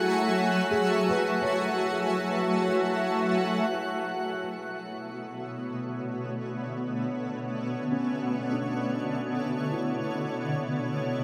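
Ambient and melancholic yet serene at a slow 50 BPM, this piece opens on F#m7 with a shimmering, detuned pad held up front, a muted, boxy felt piano arpeggiating softly in the background with audible action noise and delay, and a glassy texture of drifting overtones that drops out at 3.7 s, when the harmony moves to Bm9 and both pad and piano fade in beneath a huge, wet reverb.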